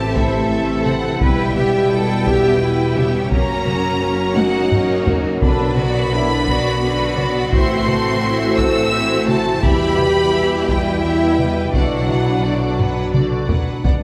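Heavy-stick taiko drums drive this tense, relentless hybrid orchestral and electronic film-score cue at a slow 57 BPM in 6/8 and B phrygian, with drum fills at 4.4 and 12.8 seconds, as violins carry a smooth, lightly vibrato melody over an expressive second violin line, rich background violas, rich bowed cellos, sustained horn and trombone chords, and lush bowed double basses, all set in a reverberant hall until a huge, dark impact lands at 13.8 seconds.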